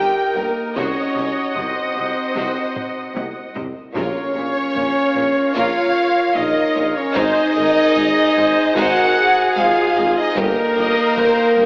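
Heard through a narrow, AM-radio filter and a wet scoring-stage reverb, this relentless, epic orchestral film-score passage, cut from a longer piece, sets a warm, expressive violin section on the melody over a second, focused violin line in the background and a very quiet, hollow flute ensemble, while an intense viola section, clear background woodwinds and an up-front, mellow French horn section hold the harmony, a vintage-toned trumpet adds stabs, a soft tuba, very quiet cellos and distant double basses anchor the bass, and a dry, close taiko ensemble enters at 0.8 seconds and plays a fill from 2.8 seconds, with a brief timpani part on calf heads joining at 4.0 seconds.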